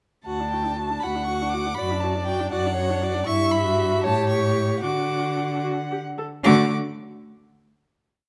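A graceful, lively classical-period string quartet movement in D major and a quick 6/8 at 74-81 BPM in dotted quarters, where a clear, smoothly bowed first violin sings the melody high above a warm second violin's expressive counter-melody with portamento, a viola rocks a two-note figure and answers at phrase ends, and a rich cello carries the bass on the beats, all with vibrato in a large studio's moderate reverb, moving from D through Em/G and A7 before settling on a final chord at 6.4 s.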